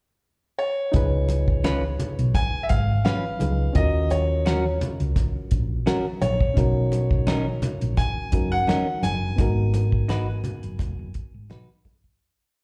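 A brilliant concert grand piano opens with a pickup at 0.6 seconds, playing a motif-based melody in call phrases, before a lush, bittersweet 1970s-style soul groove settles in at 85 BPM in G# dorian with a light 16th-note swing. A thuddy, cloth-damped drum kit with a fat snare and tight kick, a round hollow-body bass line with muted ghost notes, and held rootless chords on a reedy, lightly overdriven electric piano carry the verse, while a dark semi-hollow guitar adds short chops on the backbeat from 1.6 seconds and ringing congas sit in the background with a slap on two and open tones on four. Heard as a live gig through a club PA with slapback echo on the piano, electric piano, guitar and congas, the cinematic piece moves through C#7, D#m7, Bmaj9 and G#m7 before fading out from 9.4 seconds.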